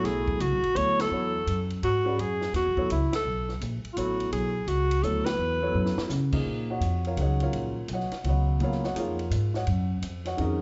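Heard in a moderate recital-hall reverb with a dulled, rounded top, this cool, spiritual modal jazz excerpt swings in 3/4 at 168 BPM, with a punchy, forceful alto saxophone carrying the melody up front with light vibrato until 6.1 s, a long-sustaining grand piano accompanying, a woody, dark pizzicato upright bass, and a compact cocktail drum kit with dark cymbals and a high-tuned snare that plays a fill just before the shift from B dorian to Eb minor at 6.5 s.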